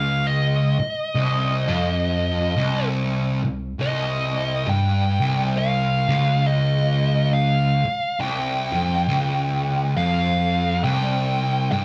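Metal in C phrygian, this brooding, ominous passage moves at a slow 68 BPM in 4/4, with a swung eighth-note feel that gives the heaviness a loping gait. A double-tracked fuzz guitar sits up front, playing a low riff between C2 and G2, its picked, distorted tone thick and warm, and the harmony rests on a C5 power chord. Above it, a fuzz lead guitar carries the melody in a narrow band from Eb5 to G5, its dark, picked tone shaped by wah and distortion and set lower in the mix than the riff. Both parts play together throughout the 11.8 seconds. The band plays live in one room, and a moderate large-studio reverb adds a sense of space around the sound. The passage is cut from a longer piece.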